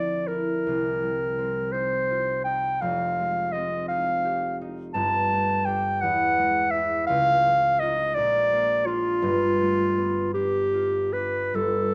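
Close, detailed microphones capture this short excerpt, set in a recital hall whose moderate reverb gives it a gentle halo. An impressionist classical duo in a rubato 6/8, it lets a dark, smooth-topped clarinet carry the wistful, mysterious melody up front as a solo voice, while a fingerpicked concert harp sits lower in the mix with ringing, acoustic accompaniment. The harmony drifts through rich, unexpected chords, from Dm9 through Eadd9 and C#add9 before settling on G9, heightening the sense of a dreamlike, unresolved reverie.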